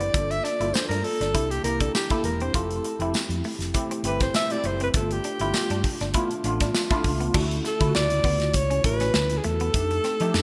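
Urban and breezy, this excerpt of polished 1980s jazz-funk pop moves at 100 BPM with a light sixteenth-note swing, led by an intimate, breathy alto saxophone soloing up front with vibrato and scooped notes until 7.3 s over a worn, slightly out-of-tune tine electric piano with ensemble chorus, a clean semi-hollow guitar riff in the background, a round, dark hollow-body bass, a punchy modern drum kit with gated reverb, and a very quiet jingly tambourine from 0.7 to 6.9 s, as chords drift from Gm7 through C7 and Fmaj7 into D major at 7.3 s under bright digital production and plate reverb.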